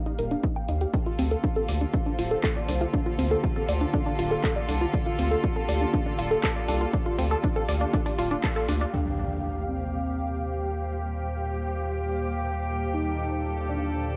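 A 120 BPM pulse drives this dark, melancholic fragment of melodic techno, with a punchy, layered electronic kick sitting up front and an analog drum machine adding handclaps and hi-hats that were re-recorded in a large room. Beneath it, a round, deep analog bass holds the low end throughout, while a tight, detuned sawtooth arpeggio with chorus and analog delay runs through a filter sweep over the opening Eb and Dm chords. An ethereal, airy pad and a bowed string section with a reedy gut-string tone fill out the harmony, much of the mix breathing with sidechain pumping. After a band accent at 8.4 seconds, the drums and arpeggio drop away and an electronic impact lands at 8.9 seconds, as a fat, mellow analog lead with vibrato and tape echo takes the melody under a filter sweep shared with the strings. A swarming, granular drone creeps in at 10.2 seconds in the background, and the whole piece carries the light reverb and tape-warm color of a home cassette recording.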